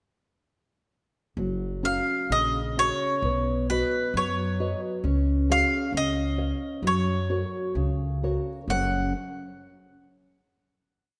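Tender and nostalgic, this short fado-style ballad in F# major moves at a rubato 66 BPM in 2/4, tuned slightly high with A4 at 441 Hz. The nylon-string guitar and upright bass enter together at 1.4 s. The guitar is fingerpicked in a dark classical style, alternating bass notes and chord figures in an oompah accompaniment. The pizzicato steel-string bass has a woody tone and plays root and fifth on the main beats. At 1.9 s the acoustic mandolin joins up front with a round, picked, double-string sound, carrying a motif-based melody in balanced period phrases that sits a little above the other parts. The harmony moves from F# to B, then through C#sus4 and C#add9 before returning home to F#, and a final chord from 8.7 s rings into a moderate scoring-stage reverb that closes the complete piece.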